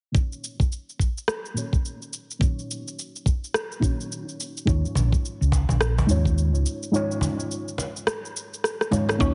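A deep, mellow chord stab with chorus, phaser, sidechain pumping and a filter sweep opens this meditative, earthy organic downtempo piece in Eb minor at 106 BPM, swung on the 16ths, alongside a knocking electronic kick and overdriven, layered cabasa and rim clicks. At 4.7 s a round, hollow-body fretless bass with lush chorus enters as the harmony moves from Ebm7 to Dbadd9, soon joined by an acoustic cajon with faint snares; a break at 6.9 s leads through a drum fill to a bright FM mallet pluck that sounds only briefly at 9.2 s. Light reverb surrounds a heavily compressed, radio-like sound.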